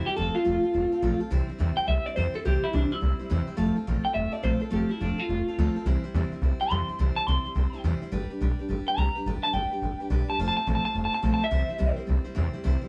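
A swung 4/4 pulse at 212 BPM drives this rowdy, retro rockabilly fragment in C major, where a twangy, slightly broken-up electric guitar through a small old amp carries the melody with harmonic tremolo until 12.0 s, over a full-bodied picked steel-string acoustic guitar and a woody, thumpy pizzicato upright bass, the three sitting up front as a band playing live in one room with light reverb while the chords move through F, C and G.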